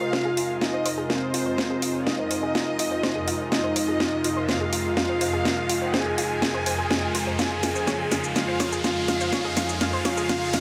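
Melodic techno at 124 BPM in F minor, driving and melancholic, where an overdriven, up-front techno kit with a cracking snare, hi-hat and shaker fills alongside an expressive, vibrato-laden synth lead and a bowed studio violin section with dub echo, while a lush detuned unison pad, an airy breathy pad, a filter-swept analog pluck arpeggio, a swarming granular drone entering at 0.6 seconds and a background riser from 3.3 seconds build tension as the harmony moves from Fm7 to Dbadd9/F.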